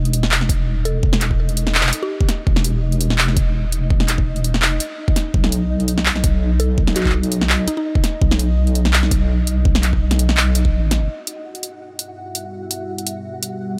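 A deep, wobbling sine-and-triangle bass with tube saturation and chorus sits up front in this heavy, spacious half-time drum and bass excerpt, carried by an overdriven, knocking electronic kick and a layered kit of cracking snare, bright hi-hats and handclaps. A pulsing, tempo-synced gated texture hums beneath, while a woody, round FM synth pluck with phaser and digital delay adds brief mallet-like phrases in the background. After a short break, the bass drops out at 11.1 seconds and a moody, full-bodied ambient pad with 12-bit sampler grit and sidechain pumping enters at 12.2 seconds.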